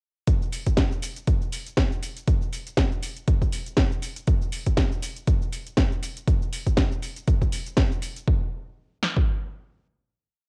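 A swung four-on-the-floor pulse at 120 BPM drives this short, groovy and nostalgic house piece, where a punchy analog drum machine's kick and snare, re-recorded in a large room and colored by cassette tape, sit up front beside a layered, tape-warm house kit of metallic closed and open hats, shaker and cracking backbeat snare whose hats and percussion pump with sidechain, the kit dropping out at 8.3 seconds as the machine carries the final hit to 9.3 seconds, all in a dry, homemade cassette sound.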